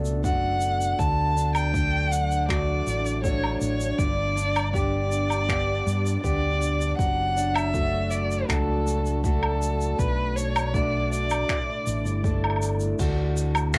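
A straight 4/4 pulse at 80 BPM is set by a deep, tape-warmed electronic kick alongside a distant, roomy brush kit whose crash, finger snaps, shaker and woodblock sit in a dark, rolled-off haze. This hopeful, pastoral folktronica piece in D major, cut from a longer work, moves through Bm7, D, G, D/F#, Bm7 and Asus4 before settling on D at 13.0 seconds. A boxy parlour-style steel-string acoustic guitar, plugged in and fingerpicked, plays arpeggios through plate reverb and tape coloring, while a round, punchy fingered electric bass sits up front beneath it. Behind them, a warbling, nostalgic pad built from detuned square and triangle tones with a sub octave holds sustained chords, softened by chorus and reverb. A woody, bowed violin with vibrato carries the melody from 0.2 to 12.2 seconds, its tone dark yet forward, trailed by analog delay. The whole has the lo-fi intimacy of a home cassette recording in a lightly reverberant space.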